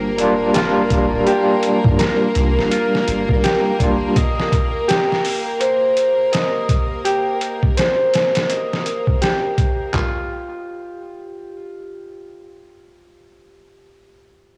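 A swung, overdriven sampler-style drum kit with a thumpy kick, handclaps and toms drives this dark, cinematic trip hop piece, as a barky tine electric piano with tremolo and tape echo and a round, deep 808-style bass both stop within the first 4.2 s, a biting violin section holds sustained chords until 10.0 s, and a ringing Celtic harp, roughened by 12-bit sampler grit, plays arpeggios through a filter sweep over a barely audible electronic impact, in a blown-out recording with plate reverb and small room ambience.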